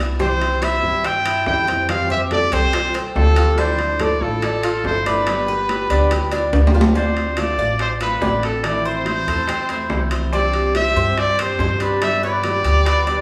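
Relaxed and warm, this is a short cut from a longer Cuban son and guajira piece in a straight four-beat feel. A bright, punchy trumpet carries the melody up front with light vibrato and a forceful pop-style delivery, while the Cuban tres spins metallic, double-stringed arpeggios and a full-bodied jumbo steel-string guitar picks out the accompaniment. Underneath, a woody, thumpy upright bass on gut strings sits prominently, and a dark, thumb-plucked nylon-string guitar adds a second line in the background until about 6.5 seconds. Round, low-tuned bongos played with soft hands murmur behind the band, and close, dry timbales with a ringing metal shell mark time, with a drum fill leading into the second section at 7.0 seconds. The band sounds as though it is playing live together in one room, bathed in a lush, lingering studio reverb.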